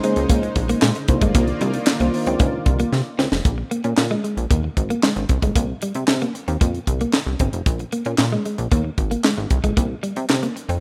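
Early-eighties boogie funk at 114 BPM in a straight 4/4, slick and danceable, cut from a longer piece and heard in a rough home demo mix with light small-room reverb. A tight funk kit with a high-tuned snare, handclaps and hi-hat sits up front beside a punchy, plucky sawtooth bass that enters at 0.2 seconds, while a clean, compressed electric guitar picks a riff throughout. A round, warbling FM electric piano with chorus and tremolo colours the opening Bbm11 and Cm11 chords until about 2.7 seconds, and a smooth, detuned analog pad with chorus holds on until about 3.4 seconds. A drum fill from 2.9 seconds leads into a sparser stretch at 3.5 seconds over Bb7(no3) and C7(no3).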